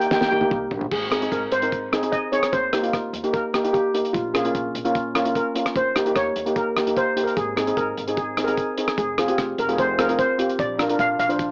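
Calypso at 149 BPM in Ab major, bouncy and carefree, cut from a longer piece. A cloth-damped, thuddy drum kit opens with a fill before a shimmering steel pan melody on double seconds takes its solo at 0.9 seconds, while airy cello pans up front supply accompaniment, a woody pizzicato upright bass sits in the background, and the dry, gritty, muffled drums with their fat snare carry a saturated cassette grain, all within a small room and an AM-radio home-recording sound.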